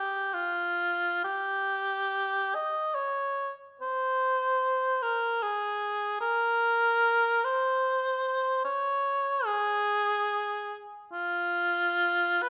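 A lone cor anglais opens and carries this classical passage in free time, its warm, up-front tone touched with light vibrato as it sings a lyrical, serene line in Ab major between F4 and Eb5. The solo unfolds expressively across its 12.5 seconds in a moderate recital-hall reverb, and the passage is cut from a longer piece.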